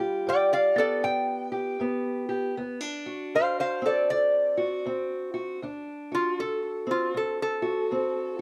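A dark, boxy parlour-style steel-string acoustic guitar opens this short cut from a longer acoustic country blues, fingerpicked up front as accompaniment over a G7 that moves to D7 at 2.6 seconds. A lap resonator guitar enters at 0.3 seconds and carries the melody up front, its metallic, nasal tone shaped by fingerpicks and slide. The feel is laid-back and gritty, with a relaxed swing in moderate four-four time. At 5.6 seconds the piece moves into a new section, where the resonator takes a solo played with a steel bar through to the end at 8.4 seconds. Both guitars sit close and dry, recorded outdoors with little reverb and an intimate, unadorned sound.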